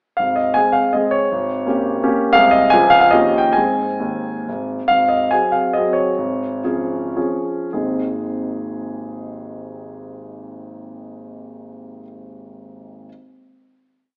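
A warm grand piano plays alone from 0.2 to 13.1 seconds, carrying a single-line melody over bass and chords that put their stress on the second or third beat. This brief classical piece is a romantic triple-time dance with dotted rhythms and a flexible rubato feel, its mood graceful and rustic. The piano sits up front with a present, polished tone and long sustain, set in a moderate recital hall reverb, though the whole recording has an AM radio sound. The harmony moves through colourful turns such as a diminished chord over a held bass, a major seventh and a ninth chord before settling home. The music slows from 4.2 seconds into a short coda, and a final chord arrives at 7.7 seconds and rings on to close the piece.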